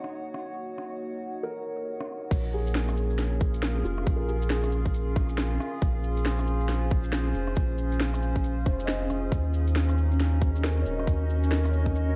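Future garage with a rainy, nocturnal mood and a swung shuffle, cut from a longer piece, where a soft, felt-muted upright piano with tape echo and a nostalgic, detuned tape-like pad with chorus both pump against the beat over an organic electronic kit of woody snare, rim click, shaker, cabasa and crash cymbal. A very quiet, flickering grainy texture opens the passage, then at 2.3 s a round, deep sine sub bass and a tight, up-front electronic kick arrive as the chords move from Ebm7 to Bbm7, with the grainy layer returning at 10.1 s. The whole piece has a lo-fi cassette sheen with light reverb and digital ambience, and the drums sound re-recorded in a large room.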